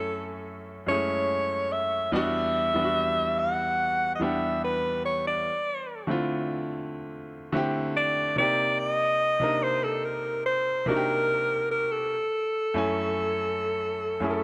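A breathy alto saxophone carries the melody from the opening moment, its subtone, scooped notes and vibrato touched with delay, while a clear concert grand piano accompanies with deep bass and short, polished sustain in this straight 72 BPM R&B passage in 4/4. The mood is longing and late-night, with the harmony moving through F#m7, Em7, Dm7 and Cm7 before returning to F#m7 at 12.1 seconds. Both instruments sit up front in a dark production with light reverb, the saxophone playing solo in a jazz style with a smooth top.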